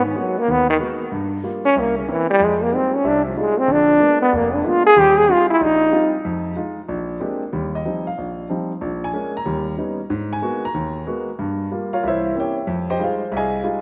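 A clear, punchy trombone and a warm grand piano open this sophisticated up-tempo swing jazz passage at 187 BPM in Eb major. The trombone takes a forceful solo with light vibrato and a vintage jazz style until 6.1 s, over the piano's accompaniment of rich chords such as Abm9, C7b9 and Eb69. The piano carries on by itself to 13.8 s, both parts sitting up front in a lush hall reverb with the dull, rough sound of a home demo.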